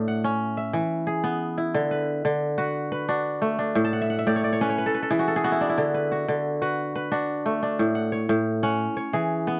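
A solo kora, fingerpicked and placed up front, rings out with crisp, ringing tones in this hypnotic, warm West African traditional piece, rolling along in a straight 12/8. After a brief opening, the music settles into a new passage at 1.7 seconds, and a kora fill stands out from 3.8 to 5.8 seconds. Close, detailed miking and a light reverb frame this short section cut from a longer performance.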